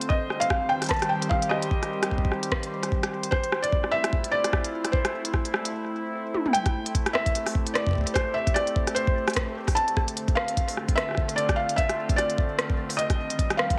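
A warbling, detuned pad of sustained chords opens this eerie, glitchy IDM excerpt alongside an electronic kit of smooth hi-hats, rim clicks and toms treated with delay, soon joined by a compressed, pitched-up, gritty kick sitting up front. A soft, felt-muted upright piano carries the melody with audible action noise, 12-bit sampler grit and tape echo, while the nostalgic, lo-fi pad pumps under sidechain and chorus, all set in a light digital ambience. The swung groove moves from Cm through Fmaj7 to Am7 and Dm7, with a drum fill at 6.3 seconds leading into the second half.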